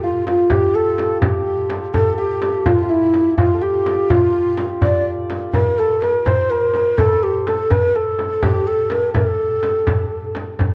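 Set in a straight 6/8 at 83 beats per minute, this longing, soulful Persian modal piece in dastgah shur on A is a fragment cut from a longer work. A breathy, hollow ney carries the melody up front with vibrato and a soft attack, while a shimmering, hammered santur plays a second line alongside it, and from 0.3 seconds a deep tombak struck with hard hands and a small, bright frame drum enter together. The ensemble sits in a moderate recital hall reverb, heard through worn cassette tape with warbly pitch drift, and the ney stops at 10.3 seconds.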